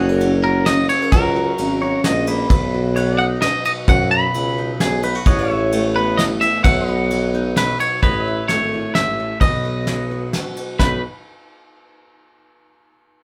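Sunny and easygoing, this short honky-tonk and classic country waltz at 130 BPM in B mixolydian sets a twangy, bright electric guitar melody up front over a jazz-styled tuba bass with light vibrato, a soft brush kit with a fat snare and dark cymbals, and a full-bodied picked dreadnought acoustic guitar. One pedal steel guitar carries a second line with fingerpicks, slide and volume swells until 5.8 seconds, returning briefly at the very end, while another pedal steel holds sustained chords in the background, all played live in one room with moderate reverb.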